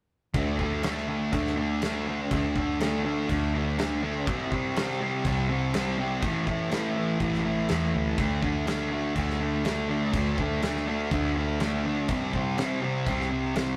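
A shoegaze and dream pop take on rock, this short excerpt cut from a longer piece moves at 123 BPM in a straight 4/4, its mood wistful and blissful. A thick, double-tracked fuzz guitar sits up front, playing a distorted, picked riff that ranges from A2 to D4 and moves through D5, C5 and A5 power-chord shapes. Beneath it, a vintage muted electric bass played with the fingers gives a dark, round and punchy low end between A1 and E2. A loose indie drum kit with a medium-tuned snare, tight kick and crash cymbal sounds from a small, pumping room. All three parts play together from 0.3 seconds to the end near 13.8 seconds, and the whole take carries the rough feel of a rehearsal room, with tube saturation and a moderate studio reverb.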